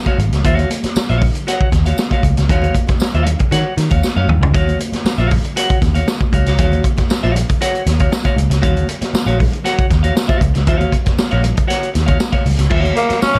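Funk in Eb minor at 117 BPM, this hypnotic groove sits on a single Ebm9 chord, with a punchy, dark-cymballed vintage drum kit and a round, foam-muted picked bass up front, while a bright, twangy clean electric guitar with lush chorus plays accompaniment. Distant high-tuned congas and a jingly tambourine in the background add percussion, and a drum fill arrives at 4.0 seconds. At 13.0 seconds a raspy, growling tenor saxophone enters with the melody just as the cut ends, all under light reverb and some lossy compression artefacts.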